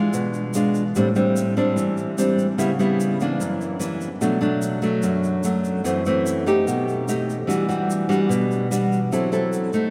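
A fingerpicked nylon-string guitar opens this smooth, wistful bossa nova in E minor at 147 BPM, sitting up front with a classical tone and audible finger squeaks as it moves through chords from E7b9 through Em9 to F#m7b5, while a grainy, bright egg shaker joins at 0.1 seconds and the whole piece rings out in a vast, echoing cathedral-like space.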